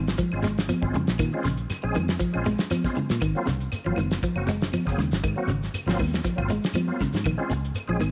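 Heard in a small room with light reverb, this driving, intense afrobeat excerpt has a clean, hollow-bodied semi-hollow electric guitar playing fingered arpeggios through spring reverb over a dark, round, foam-muted fingered electric bass. A thuddy, cloth-damped drum kit with a fat snare and tight kick sits up front. Ringing high-tuned congas, grainy shekere and woody claves stay in the background, while a bright, reedy tonewheel organ with key click, chorus vibrato and fast rotary speaker comps through a Bbm9 to Ab13 progression.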